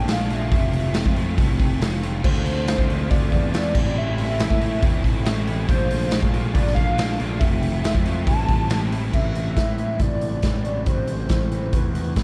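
A raw garage drum kit sits up front with a punchy kick, a medium-tuned snare, hi-hat and crash, sounding gritty and saturated in a pumping stone-room sound, driving this restless, bittersweet indie rock excerpt at 139 BPM in A phrygian, shifting to A minor at 9.1 seconds. A growly fuzz bass holds down the low end while a biting overdriven guitar with ensemble chorus and tape echo carries the riff, the guitar dropping out at 9.1 seconds, and a slightly broken-up electric guitar through a small old amp sits in the background. Over them a hollow, woody, nasal square-wave lead with chorus and vibrato sings the melody through a Bbmaj7, Fmaj7, Dm7 and Am progression that settles on Amadd9, all in a small, dark-sounding room.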